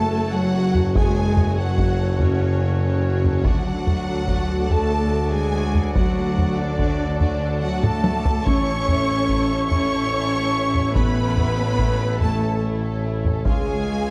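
Heroic and dramatic, this short cut from a longer epic orchestral film score moves in 12/8, with a lush violin section carrying the melody over a hollow, distant flute, a second violin line, expressive viola with portamento, clear woodwind and mellow French horn chords, and a bass of tuba, focused cellos and double basses. Heavy-stick taiko drums, close and dry, drive the music from 0.7 seconds with a fill at 7.8 seconds, while a huge, bright impact opens the passage and timpani touch in near 13.5 seconds, both barely audible. The chords move from F#m through D and A to C#, set in a dark production with moderate scoring-stage reverb.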